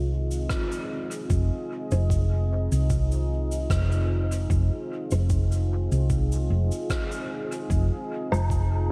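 Dark studio reverb wraps this brief ambient dub fragment, cut from a longer piece, in a deep, spacious mood with a lightly swung 4/4 feel. A moody, detuned sawtooth pad with chorus holds a sustained Fm7 chord under a round, up-front hollow-body electric bass. A muffled, overdriven electronic kick enters at 0.5 seconds, and acoustic cabasa, rim click and woodblock sit in dub echo, while from 1.9 seconds a muted, full-bodied chord stab with lush chorus, dub echo and a filter sweep plucks through the mix.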